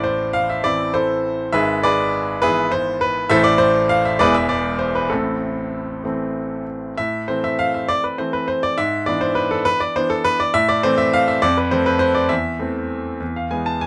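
An intimate, polished concert grand sits up front in light reverb, its deep bass and audible action noise close at hand, in this elegant, dramatic classical-period sonatina in A minor, cut from a longer piece. The solo piano moves in a rubato 6/8 at 67 BPM by the dotted quarter, spanning E1 to A5 as it leans between A minor and E-major harmonies. A single phrase is stated from 0.0 seconds and returns at 7.0 seconds, this time turning through F before settling on E by 13.2 seconds.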